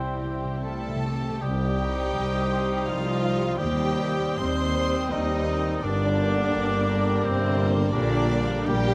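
A moderate concert hall reverb gives this short cut from a longer piece a soft, rounded glow. It comes from a slow romantic orchestral movement in triple metre, played with rubato and a warm, tender mood. Close, intimate violins carry the melody with light vibrato and a hushed sul tasto tone. Alongside them, a clear cor anglais, a dark clarinet, a hollow, pure-toned silver flute and a second, richer violin section spin supporting lines. Violas and a distant bassoon fill in the accompaniment, French horns hold sustained chords, and a very quiet harp rings out arpeggios, while cellos, an intense double bass section and, from 1.4 seconds, a mellow tuba anchor the bass. The opening is marked by a round timpani fill and a brief trumpet stab with a soft attack, after which a very quiet, vintage-toned trombone section joins with sustained chords as the harmony moves from major into minor.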